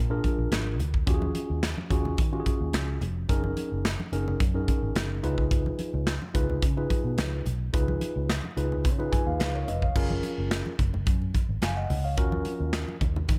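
Light reverb and a small room ambience give this short cut from a longer early-eighties boogie funk piece a late-night sheen, with a slick mood at 108 BPM in a straight 4/4. The modern studio drum kit sits up front, airy and polished, its punchy kick, medium-tuned snare, hi-hat, handclaps and crash cymbal carrying the groove. Beneath it, a vintage muted fingered electric bass runs from F1 to Eb3 with a dark, amped, foam-muted roundness. A mellow tine electric piano plays clean accompaniment through its built-in speakers, moving across Bb7, Ebm11, Gb69 and Db7, and adds a fill from 8.8 to 10.0 seconds. Bright, thin-skinned congas played with soft hands stay close and dry in the background. At 10.0 seconds the harmony shifts to a new passage on Gbmaj7 and Ebm7, carrying the groove to the end of the clip.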